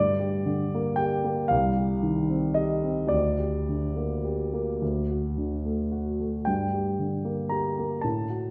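In a rubato 6/8 lilt of roughly 35-39 BPM counted in dotted quarters, this mournful, wistful romantic nocturne in G minor places a warm, up-front concert grand piano with a deep bass inside a wet recital-hall reverb, moving from Gm through Cm, Gm/D and D before returning to Gm across a brief 8.5-second passage cut from a longer piece.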